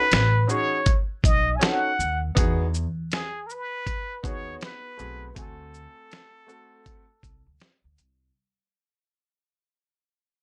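Nocturnal and cool, this jazz-hop excerpt moves at 80 BPM with a swung 16th-note feel, as a plunger-muted trumpet carries the solo melody with wah-wah tone, scooped notes and light vibrato over a brilliant, long-sustaining upright piano, a growly pizzicato upright bass and a dusty, compressed sampler-style kit with a thumpy kick, snare, hi-hat and shaker, all moving through B9, Emaj7 and D7#11 in a dry, gritty recording that fades out across its 8.4 seconds.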